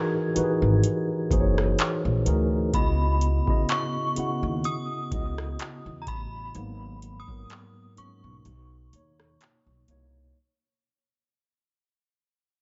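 A mellow tine electric piano carries the chords from the start, and at 0.4 seconds a booming analog drum machine enters up front with a deep kick, metallic hi-hat, handclaps and rim click, together with a woody, thumpy upright bass beneath the piano. This short, late-night contemporary R&B cut from a longer piece moves at a slow 63 BPM with a lightly swung sixteenth feel in C# dorian, its longing mood set by lush Emaj9#11, C#m11, G#m9 and Bmaj9 harmony, while a soft, inharmonic FM synth chime with ensemble chorus and analog delay floats a high melody from the start until 9.8 seconds. The dry, gritty hardware sound with transformer saturation keeps the top end dark, and the passage fades throughout, easing into a break at 8.5 seconds.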